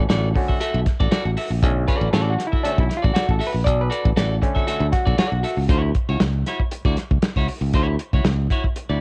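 Recorded at home on cassette in a small room, this sly, cool funk fragment in B minor moves at 118 BPM in a straight 4/4. A dark, dry soul drum kit with a tight kick and tape coloring sits up front beside a punchy, bright fingered electric bass. A clean, picked electric guitar with a warbly pitch drift accompanies them, while a mellow, stringy clav heard through a combo amp takes a percussive solo over Bm7 until 5.7 seconds, when it stops and the harmony shifts to Dmaj9.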